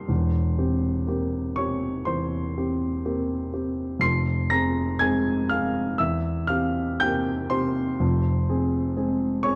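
A moderate recital-hall reverb with a 1.6-second decay surrounds a shadowy, softly rounded production. This short passage, cut from a longer piece, is a romantic classical nocturne for solo piano, wistful and melancholic in mood. It moves at an unhurried 61 BPM in 4/4 with a rubato feel. The upright piano sounds dark, mellow and woody, sits up front, plays alone from start to finish at 9.6 seconds, and covers a span from E1 to C7. Its harmony sways between C7/E and F minor, returning to F minor at 8.0 seconds, which gives the passage a yearning, unresolved quality.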